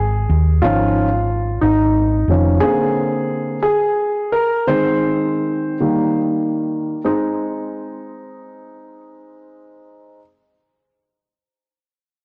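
A tender, swaying pop piece in 6/8 and Ab major at 46-60 BPM in dotted quarters, cut from a longer piece, with a warm, polished grand piano carrying the accompaniment up front until 10.2 seconds. A dark, round, punchy hollow-body electric bass sits alongside it only until 2.6 seconds, and from there the pace slows through 7.1 seconds as the harmony moves from Dbadd9/Ab through Bbadd9 and Eb back to Ab. A lush hall reverb surrounds the sound, and the recording is blown-out and overdriven.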